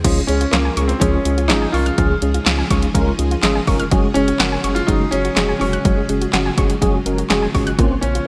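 A punchy, up-front analog drum machine with gated reverb drives this cool synth-pop excerpt at 124 BPM, joined from the start by a round, deep analog bass, a mellow tine electric piano with ensemble chorus, lush string-machine chords and soft pluck arpeggios trailing digital delay in the background, while a clear, intimate baby grand piano carries the melody from 0.3 seconds over a move from Db to Gbsus2 in a bright 1980s-style digital production.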